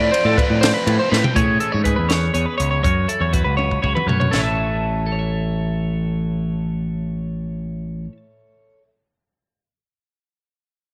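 Math rock and midwest emo in 6/8, this short cut from a longer piece feels bright and intricate. Up front, a twangy, compressed twelve-string electric guitar picks a brief melody through tape echo. A second clean twelve-string spins arpeggios through spring reverb, while a biting, double-tracked overdriven guitar sits in the background with a riff until 1.4 seconds. A growling picked bass, overdriven and placed forward, anchors the low end, and a dry compact cocktail drum kit with a punchy kick, high-tuned snare and dark cymbals adds a fill from 3.6 to 4.3 seconds. From 1.4 seconds a third twelve-string plays quieter accompaniment as the harmony moves through Amaj7 and F#m7 before settling on A, all framed by light reverb and a small room ambience.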